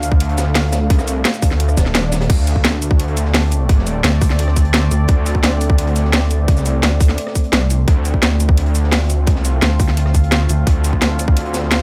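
Dry and tightly produced with little reverb, this dark, futuristic excerpt of technical drum and bass runs at 172 BPM in D minor with a straight 4/4 feel. An overdriven electronic kick sits up front, layered with a drum and bass kit of cracking snare, bright hats, rim click, shaker and crash cymbal, while a very quiet breakbeat kit adds a gritty, rolled-off acoustic snare and hi-hat from a small room. A thick, lush detuned saw bass holds D2 throughout with chorus and overdrive, and from 1.8 seconds a heavy, pulsing pluck wobble bass reaching down to Eb1 joins in two stretches, returning at 7.5 seconds. Behind them a deep, moody ambient pad sustains slow-attack chords between A3 and F5, evolving with chorus, its own reverb and sidechain pumping. A very quiet electronic swell sounds briefly around 1.7 seconds.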